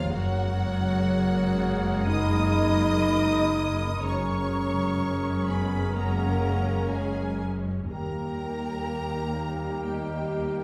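Heard from further back in a wet scoring-stage reverb, this hopeful, uplifting cinematic film-score excerpt moves at a rubato 62 BPM in F# major, from an F#add9 chord to D# at 7.9 seconds, as a lush violin section carries the melody over a second, focused violin line, airy flutes, a mellow clarinet and cor anglais, background violas, a dark distant French horn section holding sustained chords, and a vibrato-rich bass of smooth cellos and expressive double basses.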